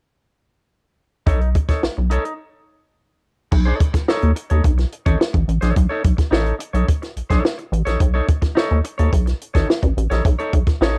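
A gritty funk excerpt at 107 BPM in B mixolydian starts at 1.3 s on a B9, with a compact cocktail drum kit (punchy kick, high-tuned snare, dark cymbals) and a rubbery, bouncy square-wave bass sitting up front, the bass carrying a resonant filter pluck and a moving notch. A semi-hollow electric guitar adds bright, clean, picked accompaniment further back, colored by cassette tape and plate reverb, while the dry drums share that cassette grit. After a break from 2.4 to 3.5 s, a second section runs to about 11.0 s, all captured as a home recording on cassette with light reverb.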